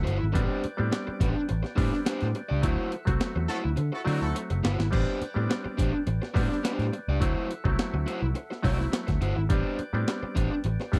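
A dry, close 1970s-style studio sound frames this hypnotic, driving funk, cut from a longer piece, with a round, punchy foam-muted bass and a gritty, compressed sampler-style breakbeat kit with a thumpy kick sitting up front. An overdriven garage guitar, nasal, stringy clav stabs and a fat tonewheel organ with key click, holding chords in the background through a slow rotary speaker, move between Am11 and D9. A band accent begins at 2.6 seconds, a clear horn section in octave doubling adds a brief second line at 3.5 seconds, and a drum fill follows at 3.8 seconds.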